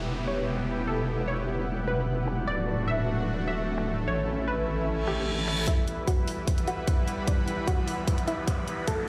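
A heavy, saturated wobble bass sits up front from the start, its detuned square and sine layers thickened by chorus and overdrive as it grinds low until 5.7 seconds. This menacing, chaotic wobble dubstep clip is cut from a longer piece and moves at 150 BPM in a half-time 4/4 feel in E dorian, cycling through Em, D and A before returning to Em. Around it, a lush supersaw pad holds sustained chords with sidechain pumping, a punchy, wave-folded unison pluck carries the melody through dub echo, and an ethereal pad drifts in the background with ensemble chorus and its own reverb. A dubstep drum kit of finger snaps and bright, filtered hi-hats ticks along with a tape-warm tint, while downlifter, reverse cymbal and riser effects weave through, the reverse cymbal leading into the second section. At 5.7 seconds an overdriven, punchy electronic kick drum lands up front as a build-up and riser carry the music forward to a drum fill at 8.9 seconds. 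The whole mix carries a light stone-room reverb, sounding as if played on a big sound system in a bare room.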